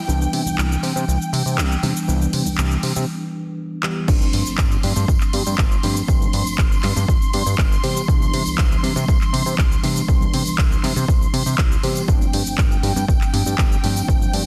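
A straight 120 BPM feel in 4/4 drives this funky, feel-good filtered disco house clip in C major, cut from a longer piece, with the electronic kick drum arriving up front and punchy at 4.1 s for the drop after a filtered build-up and a short break with a drum fill at 3.8 s. Beneath it a fat, detuned sawtooth bass sits thick and sustained, pumping with the sidechain through a low-pass filter, while a worn, slightly out-of-tune tine electric piano plays accompaniment with light overdrive and phaser, sounding as if heard through its built-in speakers. High above, a lush symphonic string section holds bowed chords with vibrato and portamento, filtered and breathing with the same pump. The tape-warm house kit layers handclaps, warm hi-hat, shaker and crash cymbal, its percussion trimmed by high-pass filtering, and bright, saturated tambourine and congas with soft hands sit in the background. 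The harmony moves between Cmaj7 and G7sus4 under light digital reverb, all pressed into a dense, heavily limited modern master.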